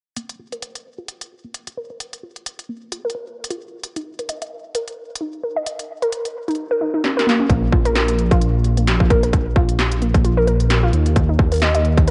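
IDM with an eerie, intricate mood, swung on the sixteenths, in a passage cut from a longer piece. A warbly, dusty pluck of detuned triangle and sawtooth with a noise layer plays dark arpeggios through chorus and tape echo under a filter sweep, while an overdriven industrial kit pairs a clanging snare with crisp hats; after a drum fill, a distorted kick and a deep, rumbling detuned saw bass arrive up front at 7.5 s. The mix sits in light reverb on worn cassette tape, its pitch drifting and its top end dulled.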